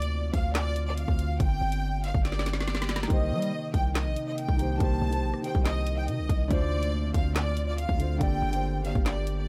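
An up-front drill kit of hard-clipped kick, woody snare, handclaps, rim clicks and hi-hats drives this menacing, dark hip hop excerpt at 141 BPM in a half-time feel, with a fill from 2.3 to 3.1 seconds, while a punchy, heavy 808-style bass with a fast attack sits alongside it. A biting studio violin section carries the melody in D phrygian over a glassy FM pad, which lies ethereal in the background with ensemble chorus and its own reverb, as the chords move from Dm7 through Gm and Cm7. At 3.1 seconds a dark, mellow concert grand piano joins as accompaniment, its deep bass adding weight to the dry mix.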